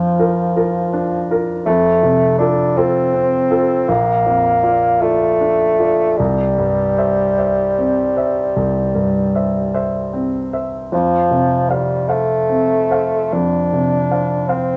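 A mellow bassoon carries the melody in this tender, lyrical romantic duo, its vibrato-touched tone sitting up front yet sounding slightly distant and roomy. It sings in a modest middle register, shaping the line with the flexible rubato of a classical soloist over a 12/8 metre. A warm, polished baby grand piano provides the accompaniment, present and close, spanning from deep bass notes up into its upper range. The harmony moves gently through Bb, C and back home to F, settling there at 10.9 seconds. A moderate large-studio reverb gives the pair a natural sense of space. Both instruments play throughout this short passage, which is cut from a longer piece.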